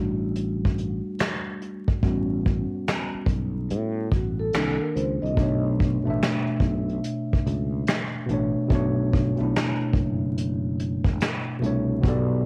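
Nostalgic and reflective, this lo-fi hip hop excerpt with a swung feel opens on a worn, slightly out-of-tune tine electric piano solo through cassette-tape haze, over a growly, tube-saturated fretless bass and an up-front brush kit with a punchy kick, hi-hat and finger snaps, while a ringing, airy soft-mallet vibraphone drifts in briefly from 4.1 to 5.6 seconds, all wrapped in vinyl crackle and a moderate booth ambience.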